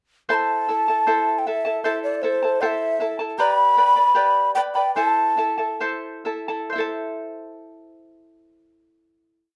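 Festive yet melancholic, this short Andean folk piece sets a breathy large quena up front, its wooden, end-blown tone crisp in attack with a touch of chiff and a slightly unsteady straight tone as it spins a motif-based melody in period phrases. Beside it the fingerpicked charango, also up front, brings shimmering double strings and open chord shapes in rhythmic strumming, moving from A minor to G and back within a moderate small-room ambience. The music slows from 3.4 seconds, the quena falls away at 5.8 seconds, and the charango carries the final chord alone until 9.6 seconds.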